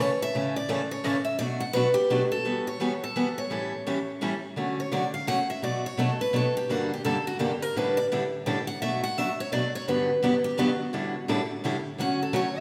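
Swinging and playful, this brief jazz waltz at 170 BPM in 3/4 pairs two picked steel-string acoustic guitars up front, a bright concert-sized one carrying the melody with audible finger squeak while a boxy parlour guitar supplies the chords, passing through A, Bm7, Dmaj7 and Gmadd9, with the melody guitar stepping into a solo from 4.6 seconds, all bathed in the lush reverb of a church or concert hall.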